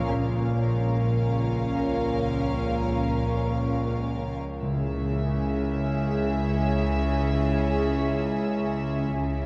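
Uneasy and eerie, this slow cinematic passage at 53 BPM moves from A#m to C#m beneath a cathedral-sized reverb, with sul tasto violin sections carrying an intimate melody and a second line set in the background over floating violas, cellos and a dark, close double bass section. Clear trombones and mellow, distant French horns hold sustained chords in the background, while a resonant sawtooth-and-sine drone with chorus and phaser shimmers with moving overtones. A metallic, ringing vibraphone with hard mallets joins at 1.8 seconds, and very quiet, round timpani sound from 4.6 to 6.3 seconds in this dark, warm production.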